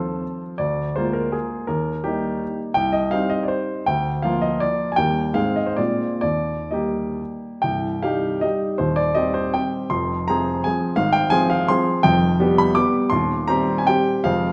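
Proud and graceful, this romantic classical dance in triple time moves with dotted rhythms and rubato between 120 and 187 BPM, as a solo baby grand piano, clear, polished and up front, ranges from deep bass to bright upper notes, turning from Eb major to C minor at 7.6 s, all bathed in a dark production and the long, wet reverb of a recital hall in this short cut from a longer piece.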